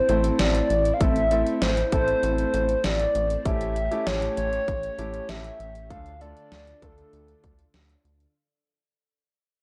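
A straight 4/4 pulse at 98 BPM comes from a punchy, overdriven electronic pop drum kit with a deep snare and metallic hats, under a rubbery, bouncy square bass sitting up front in this cool, nocturnal synth-pop fragment in A minor, cut from a longer piece and fading out across its full 8.4 seconds. A hollow, woody clarinet-like synth lead carries the melody with chorus and vibrato, while a concert grand piano with deep bass and long sustain plays accompaniment and a vintage, organ-like string ensemble holds mellow chords in the background, moving from Am to A7 at 3.5 seconds and Dm at 5.9 seconds. The sound is dry and gritty with light reverb, carrying transformer saturation and cassette tape character.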